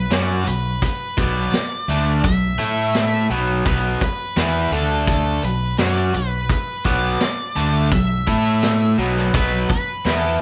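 A straight 4/4 groove at 84 BPM drives this gritty, swaggering classic rock passage in B minor, where a punchy vintage drum kit with a rolled-off top and a double-tracked, crunchy overdriven guitar riff sit up front, a growling fingered electric bass adds overdriven low-end weight, and a dark octave-fuzz lead guitar carries the melody at a somewhat lower level, all captured with light reverb like a band playing live in one room.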